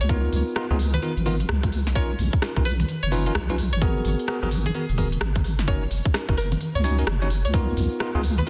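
Sunny and bouncy, this swung two-step UK garage cut moves over C#13, G#m9 and F#6 chords, anchored by a deep, dark wobble bass with chorus sitting up front and a tight, tape-warm electronic kick that drops out at 7.7 seconds. A garage kit of congas, crisp hats, rim clicks and a cracking, softly clipped snare, re-recorded in a large room, drives the groove alongside a grainy egg shaker in the background, while a worn, slightly out-of-tune tine electric piano plays lightly overdriven stabs through delay. On top, a twangy, warbling string-like resonator pluck carries the melody with chorus, phaser and digital delay, and the mix sits in light reverb under a dense, heavily limited master.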